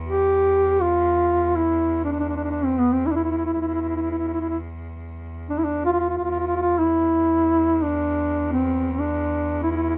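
Unfolding in free time, this ten-second excerpt from a longer Arabic piece in E maqam kurd, tuned to A4 = 440 Hz, has a hypnotic, soulful mood. A single bowed cello holds a rich drone on E2 from the first moment, played close and focused with vibrato, and sits beneath the melody at a lower level. At 0.1 seconds a dark duduk enters up front as the solo voice, carrying a folk-style line between B3 and G4. Its playing is marked by vibrato and scooped notes, with a smooth top to the tone. A light reverb surrounds the pair.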